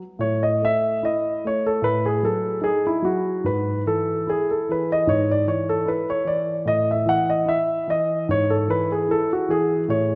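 A solo concert grand piano opens at once, up front and warm with a deep bass, playing a radiant, dance-like baroque-style suite movement in E major at 74 BPM in 4/4, shaped with a flexible rubato feel. Its harmony moves from A5 through F#m13/A to E/G#, then returns to A5 and E/G#, with the piano ranging from G#2 to F#5. A wet concert hall reverb with a 2.2-second decay surrounds the instrument through this brief section, which is cut from a longer piece and ends at 10.2 seconds.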